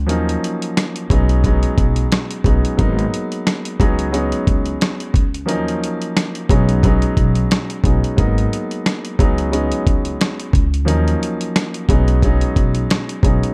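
A woody upright bass, plucked on gut strings, opens this reflective, gritty boom-bap hip-hop excerpt, anchoring the low end. At 0.1 seconds an intimate grand piano and a sampler-style soul drum kit join in, with kick, snare, rim click and hi-hat riding a light sixteenth-note swing. The compressed drums sit up front, with a thumpy kick and a medium-tuned snare. The piano is also forward in the mix, filtered at both ends yet natural in tone, with its action noise clearly audible. Its chords cycle through Ebm9, B6, Abm7 and Db7sus4. A small room ambience and dark, warm production frame the passage, and it is clearly cut from a longer piece.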